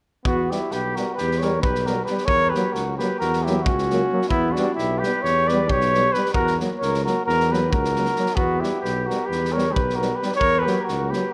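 A distant, roomy flugelhorn opens this bittersweet, virtuosic Balkan brass band excerpt at 0.2 s. At 0.3 s it is joined by a dark trumpet carrying the melody up front with light vibrato, a mellow tuba on bass and a punchy, gritty acoustic drum kit of kick and snare. At 0.5 s a soft-attack, close-miked trombone and a euphonium with light vibrato settle in the background, while the harmony alternates between Em and F# in E dorian sharp4 over a straight 9/8 at 266 BPM in eighths, with the band heard in a moderate scoring-stage reverb.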